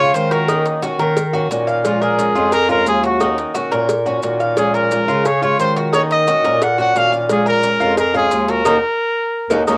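A warm, lightly vibrato trumpet with scooped notes carries the melody up front in this nostalgic, danceable Cuban son and guajira excerpt at 176 BPM, over bright fingerpicked flamenco guitar, metallic double-strung tres arpeggios and a clear bass clarinet bass line, with tight high-tuned cowbell and grainy maracas in the background, Ebm7 and Bbm7 alternating beneath a band accent from 8.7 seconds and a drum fill at 9.3 seconds, the trumpet, guitar and tres carrying the colour of a cassette home recording in light reverb.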